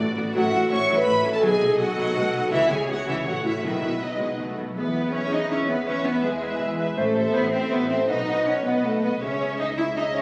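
A graceful, cheerful classical passage in 3/4 at 162 BPM in E major opens with a distant, lush violin melody over smooth violas, ringing bright harp arpeggios, and a bass of expressive, up-front cellos and double basses, joined at 0.4 seconds by a soft-attacked second violin line and mellow, punchy French horn chords, while very quiet, dry timpani strike between 1.4 and 4.2 seconds. At 4.8 seconds a clear, present clarinet and a pure, crisp-attacked flute add very quiet second lines as the harmony turns to E, then Am, B and C#m. The orchestra sits in a moderate stage reverb, heard as if captured on a phone in a club-like room with compression, and the fragment is cut from a longer piece.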